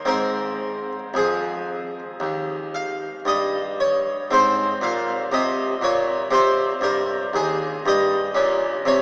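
Grave and introspective, this short portion of a longer baroque-style suite movement in 4/4 unfolds at an unhurried pace with a freely flexing rubato feel. A solo harpsichord of the Italian style carries the whole passage, sounding full and brilliant, its plucked tone fed by three sets of strings and placed up front. The instrument ranges from a deep Eb2 up to F5, and its sound carries an airy quality. A lengthy cathedral reverb, with a decay of 6.3 seconds, surrounds the playing in a vast, echoing space, though the overall sound has the narrow character of a small speaker. The music falls into two halves, the second beginning at 4.3 seconds, moving from an opening Ab harmony through later chords on Eb before the passage closes at 9.0 seconds.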